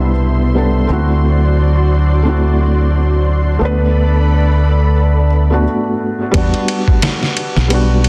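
Trip hop at 88 BPM in E minor, this melancholic, hypnotic excerpt from a longer piece moves in 4/4 with a swung sixteenth-note feel. A soft, felt-muted upright piano carries the accompaniment throughout, its thick, intimate tone shaded by harmonic tremolo, tape echo and a grainy 12-bit sampler edge. Beneath it, a deep dub fingered electric bass sits up front with a dark, round sound thickened by tube saturation. A vintage string machine voiced as cellos holds slow-attack sawtooth chords with a sub octave, ensemble chorus and 12-bit sampler grit under a filter sweep, then falls away at 5.6 seconds, just before the music pauses briefly from 5.7 seconds. At 6.3 seconds a compressed, pitched-down sampler-style drum kit arrives with a thumpy kick, a medium-tuned snare and ride cymbal, while the harmony settles from Cmaj7, D7 and Bm7/D onto a rootless Em7. The mix has a digital ambience and a dense, heavily limited modern master.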